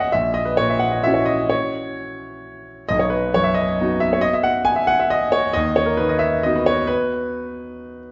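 A warm concert grand piano carries this short classical waltz alone, its deep bass and smooth, vintage tone sitting up front in the sound. The piece is in B major and 3/4 at 133 BPM, played with rubato so the beats fall unevenly and the lilt feels free and playful. Across its 8.1 seconds, cut from a longer piece, the harmony moves from F#7/A# at the start to B at 2.9 seconds and B/D# at 5.6 seconds. The piano ranges from A#1 up to G#5, giving the brief passage a sparkling character above its rich low end. A recital hall reverb with a 1.6-second decay surrounds the instrument, adding a lush, resonant space.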